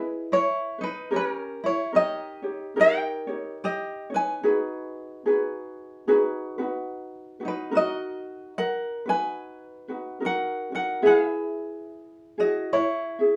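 A relaxed 4/4 pulse at 72 BPM carries a gentle swing on the eighth notes in this sunny Hawaiian piece, cut from a longer work. A bright tenor ukulele, thumb-plucked with a light touch and set up front, carries the melody from C#4 to G#5 throughout the 13.4 seconds. Beside it, a second ukulele, warm and also thumb-plucked and light, supplies accompaniment in a narrower range from D#4 to E5. The harmony opens in G# minor, moving through Emaj7, D#7 and G#m7 before shifting to B major at 7.7 seconds with Bmaj7 and then E. The pair sits in a small, wet studio room with a short reverberation that keeps the sound intimate and easygoing.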